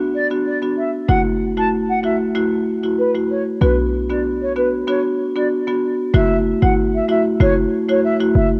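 Bouncy and hypnotic, this short dancehall excerpt, cut from a longer piece, pairs an up-front marimba, struck with medium mallets and warm in tone, against a punchy, tight 808-style bass with a sine body, a noise layer, a fast attack and a decaying sound. Above them, a mellow concert flute carries the melody from 0.1 seconds, airy and distant, tongued and expressive with vibrato, coloured by cassette tape and analog delay. The chords move between Bm and F#m7 in a home cassette recording with small room ambience, and the second section begins at 6.1 seconds.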